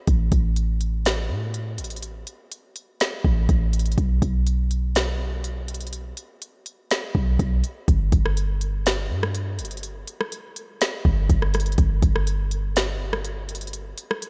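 The drums and a deep 808-style bass arrive together at the very start of this floating, dreamy slice of atmospheric cloud-rap, settling into a relaxed half-time feel in 4/4. The bass is boomy and mellow, a sine tone with a noise layer, a fast attack and a decaying tail, sitting up front and low in the range. Beside it, the electronic R&B kit offers a soft kick, a woody snare, rim clicks and smooth hi-hats, all given a touch of overdrive that lends the produced sound some grit. Light reverb wraps the mix, adding to the hazy, suspended mood. The bass drops out at 13.9 seconds, leaving the drums to carry on alone until this excerpt cuts off at 14.3 seconds.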